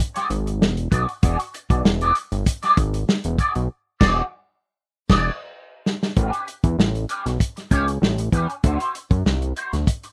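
A straight 4/4 funk groove, gritty and dry in a rough home-demo mix cut from a longer piece, rides on a muffled, lo-fi soul drum kit with dark cymbals and a tight kick, a fat, detuned analog bass with a filter sweep, and a twangy, scooped electric guitar accompanying through wah and chorus over E9, with a band accent and drum fill leading to a shift to A9 at 6.2 seconds and D9 at 8.6 seconds.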